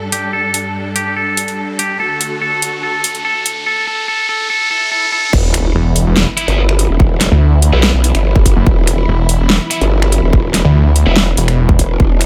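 Aggressive and heavy, this wobble dubstep cut at 144 BPM in E minor moves in a half-time feel, opening on a build-up where a twangy, clean electric guitar melody with tape echo rides over lush, bowed strings pumping against the sidechain, a dubstep kit with a huge snare and metallic hats, and a riser and swell moving from Gsus2 to D. At 5.3 seconds the drop lands with a sub-drop impact on an E5 chord, bringing in a punchy overdriven electronic kick and a saturated, wobbling growl bass with chorus and formant filtering, joined at 5.7 seconds by a detuned, snarling sawtooth bass with a moving notch, both basses sitting up front. Bright, high-gain guitar stabs with distortion and tape echo cut through the low end from 6.4 seconds, all in a dry, high-passed mix.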